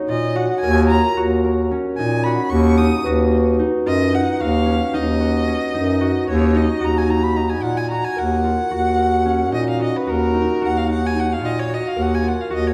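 A dark, warm production set in a reverberant scoring stage frames this hypnotic, pensive chamber piece in an uneven 7/8, where a mellow, smooth-topped bass clarinet holds the bass up front, a ringing fingerpicked concert harp spins arpeggios, a nasal bowed violin carries the melody with vibrato, and an airy, metallic vibraphone with soft mallets adds a background second line until 6.5 seconds over an Ebm9 harmony.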